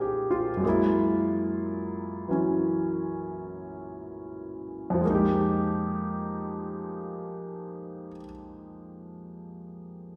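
Jazz fragment, melancholic and intimate, where a lone concert grand piano plays accompaniment chords from Bbm11 through Gb7 to Fm11, slowing over the first 5.0 seconds before settling into a second section. The piano sounds clear, natural and up front, with deep bass and audible action noise. A wet recital-hall reverb gives it the air of a church or concert hall.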